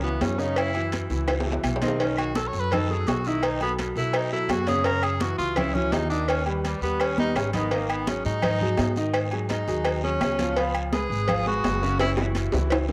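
A bright, vibrato-laden tenor saxophone solos up front over a smooth vintage concert grand piano, a dark, thumpy pizzicato upright bass and background congas from the start of this lively, sophisticated Afro-Cuban jazz excerpt at 168 BPM, with tight high-tuned cowbell and bongos, ringing timbales and agogo bells and a raspy guiro joining at 0.2 seconds, very quiet woody claves at 0.6 seconds, drum fills punctuating the groove, cassette-tape coloring on the saxophone and piano, and a moderate spring reverb giving the whole home-recorded cassette sound its room.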